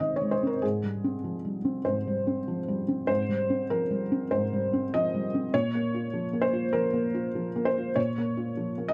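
A felt-muted upright piano plays alone and up front in this short fragment of a longer neoclassical minimalist piece, its thick felt giving a dark, mellow tone with the soft noise of the action clearly audible. Set in F minor at 98 BPM in 4/4 with a loose rubato feel, it moves from Ab to Fmadd9/Ab and reaches Bbm at 5.5 seconds, spanning Ab2 to Eb5. A moderate studio ambience surrounds the close, intimate sound, and the whole mood is quietly reflective.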